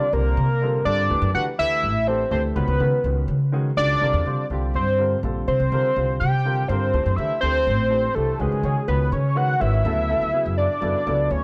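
A fat, detuned sawtooth analog lead with chorus and slapback echo carries the melody up front in this slick, funky jazz excerpt at 82 BPM in a straight 6/8, over a clear, slightly worn concert grand piano accompanying on suspended chords and a woody pizzicato upright bass, all set in light reverb, until the harmony moves to Dmaj9 at 9.8 seconds.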